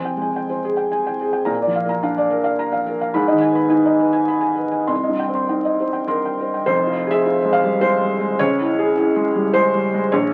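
A felt-muted upright piano plays alone from 0.0 to 10.3 s, soft, mellow and up front, carrying an intimate, wistful piece of neoclassical minimalist piano in 3/4 at a rubato 98-109 BPM, tuned to A4 = 441 Hz. Its harmony moves from Fmadd9 through Bb, Abm and Cm, then settles into F harmonic minor at 6.7 s, passing from Fm to Dbm. The sound carries a wet studio reverb and the crackle and dulled top of a very old 78 rpm record, and this short passage is cut from a longer piece.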